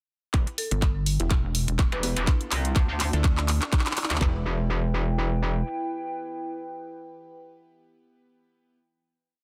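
A metallic, saturated wobble bass leads this gritty, aggressive bass house piece at 124 BPM in E phrygian, with a pulsing, mellow second wobble bass joining at 0.7 s beneath tape-warm garage drums carrying a four-on-the-floor kick, toms, claps and programmed hats, while a band-passed, nasal sawtooth stab plays syncopated chords through a filter sweep, a woody marimba adds short tape-echoed phrases in the background and a faint riser rises underneath. The whole opening is a build with a drum fill, moving from Em to Dmadd9 before settling back on Em at 4.2 s. A deep, detuned analog pad with chorus and phaser enters at 3.1 s and holds a final dark chord until 8.8 s, in a dense, heavily limited mix with little reverb.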